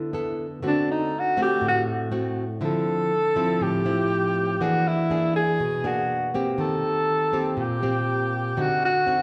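The recording sits in a church or concert hall, with a wet, lingering recital-hall reverb that gives the sound a spacious glow. This is a wistful, smooth bossa nova in 4/4 at 121 BPM with a straight feel, cut from a longer piece. A fingerpicked nylon-string guitar opens alone and carries the accompaniment throughout, its acoustic, classical tone sitting up front. The breathy alto saxophone enters at 0.7 seconds with a jazz-style solo melody, its subtone and vibrato giving it a warm quality while its punchy attack still comes through the roomy, slightly distant ambience. The harmony moves from a rootless G69 and D7 into a second section at 2.6 seconds, then passes through Dm9, E7#11 and Eb6 before settling on D7b9.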